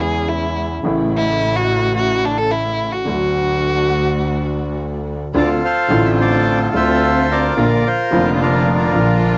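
This dry home recording on cassette captures a short slice of a dramatic, melancholic tango, moving in a rubato 4/4 at around 108 BPM. An expressive bowed violin opens with a solo second line, close and up front, its soft attack, vibrato and portamento carrying a cassette-tape coloring before it drops out at 4.8 seconds. Underneath, a warm, woody upright piano with long sustain carries the accompaniment, while a rich, focused chamber string section sits in the background with bowed stabs, both sharing that taped character. A single bowed double bass anchors the low end with an earthy, biting tone and light vibrato. At 5.3 seconds the music turns from D major to D minor, moving through chords such as Dm7 and Bb, and a reedy, bright bandoneon takes the melody up front from 5.4 seconds to the close.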